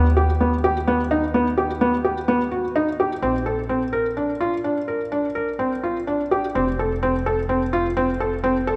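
A felt-muted upright piano opens with soft, intimate arpeggios in Bb major, its thin felt and audible action noise up front, while a woody, dark pizzicato upright bass plays beneath it from the start. This playful, restless contemporary chamber music moves at 127 BPM in an uneven 7/4 with a straight feel, tuned to A4 = 435 Hz, passing from Ebaug to Bb before a new section arrives on F at 6.6 seconds. A wet concert hall reverb with a 2.4-second decay surrounds this short cut from a longer piece.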